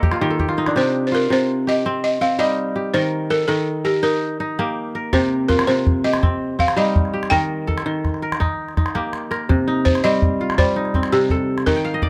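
Flowing and reflective, this West African traditional excerpt moves in a steady 12/8 at 110 BPM (dotted quarters) in C dorian, circling between C minor and E-flat chords. An up-front, fingerpicked kora rings out crisp, warm arpeggios beneath a woody, buzzing balafon melody struck with rubber mallets, while a small calabash sounds briefly at the opening alongside a short kora fill and returns at 5.1 seconds. A drum fill leads into a balafon solo at 9.5 seconds, all captured with close, detailed microphones and light reverb.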